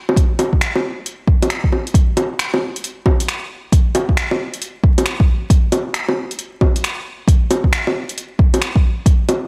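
A deep house drum kit opens this melancholic, rainy future garage piece at 0.1 s, with bongos, finger snaps and metallic hi-hats, and an electronic kick drum joins at 0.2 s. The groove sits at 135 BPM in 4/4, with a 64% swing on the sixteenths. Both drum parts are layered, produced and overdriven, re-recorded in a large room yet placed up front, with the kick the louder of the two and carrying a deep thump. The overall mix keeps reverb to a minimum, while a vinyl crackle lends a dusty grain. The arrangement shifts into a new section at 1.9 s, and the piece, cut from a longer work, runs to about 9.5 seconds.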